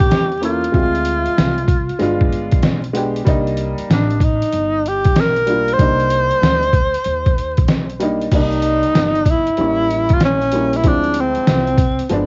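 This mellow, cool jazz-hop fragment opens with all four parts together at 95 BPM in 4/4, its sixteenths swung at 65%. Up front, a breathy tenor saxophone carries the melody between C4 and C5 with soft-attacked, scooped notes, vibrato and an intimate, whispered jazz tone, colored by cassette tape and tape echo, until it drops out at 12.1 seconds. Beneath it, a worn, slightly detuned upright piano with a woody, present character accompanies from F3 to E5 over A7b9, Dm7b5, G7b9 and Cm9 chords, also carrying a cassette-tape color, while a pizzicato upright bass on steel strings sounds bright and acoustic, sitting low from G1 to E2 and further back in the mix. The sampler-style trip hop kit, the loudest part, is compressed, pitched down and gritty, with a thumpy kick, medium-tuned snare, hi-hat and crash, all tape-tinged and forward. Moderate booth ambience, vinyl crackle and a dulled home-cassette top end that stops at 7.9 kHz give the whole piece a lo-fi haze, with the opening section returning at 8.3 seconds.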